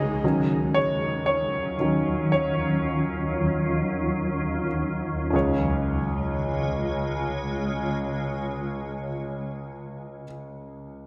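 In a straight 4/4 pulse at a slow 46-60 BPM, this tender, emotional pop ballad excerpt in Db major eases its tempo through the first 5.3 seconds, where the grand piano carries a solo passage over an Ebm7 chord. The concert grand sits up front with a warm, intimate and natural tone, its deep bass reaching down to Db2 and its audible action noise adding closeness. Beside it, a granular cloud pad holds sustained chords from the start until 10.2 seconds, a cloudy, blurred and evolving texture of detuned sine and triangle voices in unison, shaded by ring modulation, slow attacks, long releases and its own reverb. A very quiet electronic downlifter sits beneath the opening, ending at 5.3 seconds as the harmony settles onto Db for a second section. Light reverb and digital ambience frame the whole in a soft, gently spacious setting.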